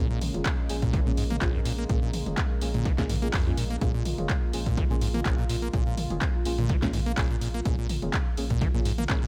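A swung 125 BPM acid house groove in 4/4 sits on a single Bbm7 chord in Bb minor pentatonic, trippy and raw, with a squelchy, resonant sawtooth acid bass riff up front over a round sine sub bass, a smooth, warbling detuned pad with subtle chorus and sidechain pumping, dark chord stabs in the background treated with chorus, phaser and digital delay, a punchy tape-warm drum machine of handclaps, hi-hat, snare and toms from 0.2 seconds, and an electronic kick from 0.5 seconds, all in a digital ambience in this short cut from a longer piece.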